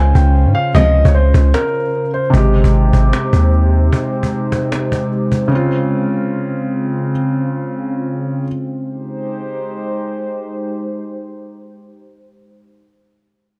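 A dark baby grand piano opens this dreamy, wistful trap fragment with a mellow, long-sustaining melody trailed by delay, over a warbling, detuned tape-like pad whose nostalgic, lo-fi chords carry chorus and reverb through 12.6 seconds. Beneath them a deep, sine-toned 808 bass sits up front with a fast attack and long decay, while a snappy, vintage cajon played with soft hands carries the half-time groove. A brief stab from a lush, woody string section, bowed with vibrato and echoed by delay, flickers in early on. After a short break, a felt-muted upright piano takes over the accompaniment at 2.3 seconds, intimate and up front enough that its action noise is audible. The production is warm, with light small-room ambience.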